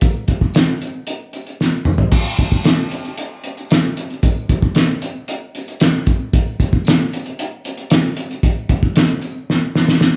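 Hazy and hypnotic, this short rock excerpt moves at 114 BPM in a straight 4/4, carried by a cloth-damped, thuddy drum kit that sits up front with a fat snare, tight kick, gritty saturation and a muffled, rolled-off top, with crash, hi-hat and toms in the mix. A jingly, bright tambourine rings distantly in the background, as if from a larger room, while the band plays live together under light reverb. Drum fills break the pattern at 1.6 seconds and again at 9.5 seconds, just before the cut.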